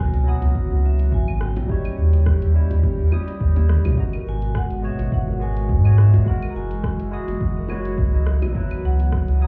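A deep, up-front sub bass anchors this smooth, wistful sunset chillout at 105 BPM in G# minor, beneath a bright, barky electric piano, a ringing hard-mallet vibraphone melody, a thumb-plucked harp arpeggiating in the background, an airy, breathy pad, and a glassy, drifting texture that stops at 4.0 s, while a punchy electronic kick, a layered deep house kit with a fill at 3.5 s, and very quiet low-tuned bongos swing gently, the whole mix sounding muffled as if heard through a wall with club reverb.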